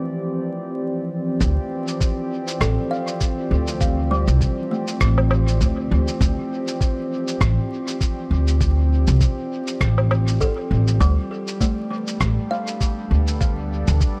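A warbling, detuned tape-like pad with chorus and reverb opens this hazy, spacious ambient dub excerpt in D dorian at 100 BPM, sustaining a Dm11 chord that shifts to Gadd9 at 11.0 seconds. At 1.4 seconds a woody, up-front pizzicato upright bass with tube saturation enters with a thumpy, pitched-down kick and a muffled cabasa, rim click and woodblock kit treated with dub echo, all riding a lightly swung 16th-note feel. A soft, hollow kalimba adds tape-echoed arpeggios from 2.6 seconds and returns later, while vinyl crackle, lossy artefacts and a dark small-room ambience give the mix its nostalgic lo-fi haze.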